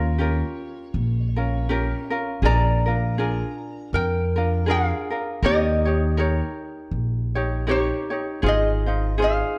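A dark, warm production sets this short Hawaiian fragment in a moderate recital hall, where the reverb lingers for about 1.5 s around three acoustic instruments. The mood is languid and sunny, moving at an unhurried 80 BPM in 4/4 with a gentle swing on the eighth notes. A lap resonator guitar carries the melody with fingerpicks and slide, its mellow tone edged with a metallic, nasal bite as it ranges from F4 up to Bb5. Underneath, a light, fingerpicked ukulele sits up front with the accompaniment, while a pizzicato upright bass on steel strings adds a woody, thumpy low end, also close and present, stopping at 9.4 s just before the others finish at 9.6 s. The harmony drifts from Eb9 through Bb7 and Eb7 before settling on Ab6 at 8.4 s, giving the brief passage a relaxed, lilting color.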